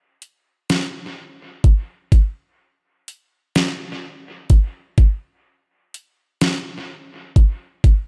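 A smooth R&B drum kit opens the clip at 0.2 s and carries it alone to the close at 8.1 s, setting a sultry, yearning mood. The kit is electronic and produced, with a knocking kick, a deep snare and metallic hi-hats sitting up front in the mix. The groove is in a slow 6/8 with a straight feel, giving the short section a patient, late-night sway. Little reverb colours the sound, yet the mix is heavy with echo. This brief passage is cut from a longer piece.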